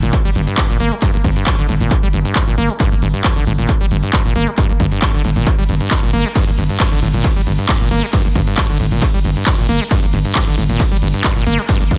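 Hypnotic and relentless, this driving peak-time techno cut in G minor runs at 135 BPM in a straight 4/4, with a squelchy, resonant, pumping acid saw riff up front alongside a growling, buzzy 808-style bass held low on G1 with tube saturation and a low-pass filter, while a tape-warm techno kit of smooth hats, handclaps and ride trails tape echo and a punchy electronic kick joins at 0.1 seconds, all set in light reverb within an echo-heavy mix.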